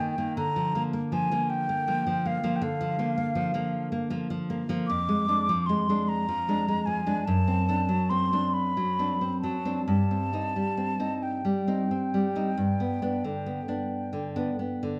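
A romantic duo for flute and classical guitar, this solemn, melancholic passage, cut from a longer piece, unfolds in 12/8 with a freely breathing rubato. The silver concert flute carries the melody high in its range, its airy, hollow tone shaded with vibrato and clearly tongued notes, until it falls silent at 14.8 seconds. Beneath it, the nylon-string guitar supplies fingerpicked accompaniment that sits up front, its deep classical body sounding slightly louder than the flute, with occasional finger squeaks adding intimacy. The harmony drifts through Bb/D, Ddim/F and D7/F#, then settles on Cm/G before resolving to G. A moderate recital hall reverb gives the pair a natural, rounded sense of space.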